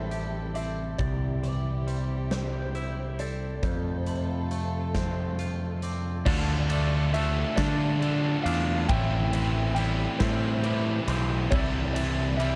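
A dark, dry production gives this cinematic, hopeful post-rock fragment a close, weighty feel in a slow, swaying 6/8. A growling, overdriven picked bass sits up front, while a huge arena drum kit with a punchy kick, medium-tuned snare and bright cymbals comes in at 0.1 seconds with a pumping room sound. Further back, a twangy, clean fingered guitar and a lo-fi, slightly broken-up guitar through a small old amp weave arpeggios, the latter bathed in lush chorus, both carrying tape echo. A gloomy, compressed slide guitar sings the melody with tape echo of its own, supported at first by an intimate bowed string section playing soft, vibrato-tinged sustained chords sul tasto until 6.2 seconds. At 6.3 seconds a bright, double-tracked distorted guitar riff pushes to the front as the harmony moves from Am7, C and F to Dm, Am7 and C.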